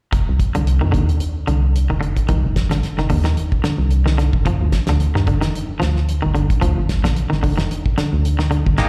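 Heard through a live venue's PA with recital-hall reverb, this funky, intense afrobeat excerpt at 111 BPM in F dorian rides a punchy, round FM bass and a dry, up-front 70s drum kit with a fat snare and tight kick, while a clean, twangy electric guitar picks arpeggios through plate reverb and slapback echo over F7 and G7 chords, until a slightly broken-up, scooped guitar stab and a grainy, mellow shekere arrive at 8.8 seconds.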